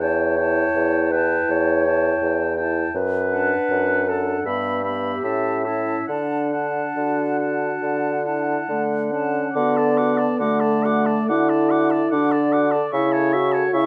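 A light reverb gives this short cut from a longer piece a soft sense of space, with the bassoon sitting up front and the oboe and clarinet heard from further back in the room. It is a tender, romantic slow movement for wind quintet in classical style, moving in a gently rubato four-beat pulse. The airy silver flute carries the melody high above the ensemble, its tone bright with expressive vibrato and a soft attack. The oboe traces a clear second line beneath it with light vibrato, while a mellow French horn and a roomy clarinet fill in the accompanying harmonies. The bassoon anchors the bass with a warm, gently vibrating tone, and at 9.6 seconds the music moves into a new section that carries through to the end.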